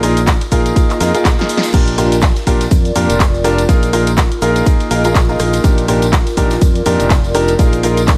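A light reverb and small-room ambience frame this joyful, feel-good piano house clip at 123 BPM with a swung 16th feel in Bb mixolydian, led by a clear, smooth concert grand piano riff that sits up front with deep bass, tape echo and sidechain pumping over chords moving from Bb7sus4 through Gm7/Bb and Ebmaj7/Bb. A punchy electronic kick enters at 0.3 s beneath a layered house kit of punchy snare, bright hats, handclaps, rim click, shaker, ride and crash, joined by a very quiet, polished acoustic kit and a background tambourine arriving at 0.2 s. A fingered electric bass with a direct, amped tone and a breathy, detuned pad with chorus both pump with the sidechain, while a drum fill runs from 1.2 to 1.7 s and a faint reverse cymbal sounds over its final stretch, between 1.4 and 1.7 s.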